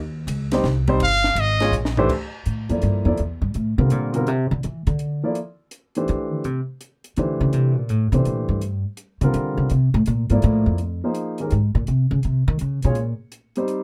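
A swung waltz feel in three carries this open, searching modal jazz passage, cut from a longer piece, where a brilliant, forceful trumpet with light vibrato and plate reverb states a short phrase at 1.0 s before a drum fill leads into an upright bass solo at 2.1 s. The woody, dark pizzicato bass sits up front over a warm grand piano accompaniment and a small, smooth cocktail kit with a punchy kick, high-tuned snare and rolled-off top. The harmony shifts to a new centre at 10.8 s, and the whole passage sits in a light reverb.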